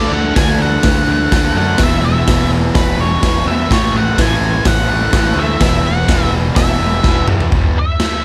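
Garage rock in a straight 4/4, this short cut from a longer piece feels raw and rowdy from the first beat. A double-tracked fuzz guitar sits up front with a bright, picked riff, moving through D, E5, A5 and back to E5, while a growling picked electric bass, overdriven and punchy, anchors the low end. Over them, an octave-fuzz lead guitar carries the melody with a dark, distorted tone. The drum kit comes in at 0.4 seconds, its punchy kick, medium-tuned snare, hi-hat, toms and crash ringing in a pumping stone room, saturated and gritty with a rolled-off top, and it snaps into a fill at 7.0 seconds. The mix stays dry and close, with the drums pushed to the front of the sound.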